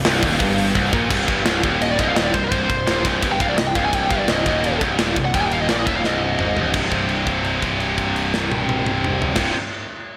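A driving, straight 4/4 pulse at 170 BPM anchors this heavy, aggressive heavy metal passage in C minor, cut from a longer piece. Two distorted rhythm guitars, one bright and tight, the other scooped and high-gain with a slapback echo, grind out the riff across the whole 9.5 seconds, joined by a growly, punchy fuzz bass with overdrive and a tight, up-front acoustic drum kit with a medium-tuned snare and a rolled-off top. A warm, double-tracked crunchy guitar sits in the background only for the opening second, and a drum fill at 0.8 seconds leads into a dark, high-gain lead guitar solo with tape echo that runs to about 6.8 seconds. Another fill sets up a shift from the C minor harmony to a C5 power chord, where a held note rings out to 9.4 seconds. A moderate, lush hall reverb gives the whole mix a big arena sound.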